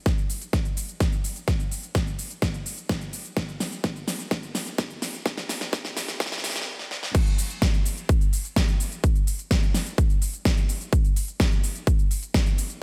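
Anthemic and euphoric, this 127 BPM EDM excerpt in straight 4/4 rides a build-up of drum fills and a filter sweep on a layered, up-front big-room kit of huge snare, crisp hats, shaker and crash over a punchy, tape-warm electronic kick, all under light reverb and a high-pass filter, until the drop lands at 7.1 seconds.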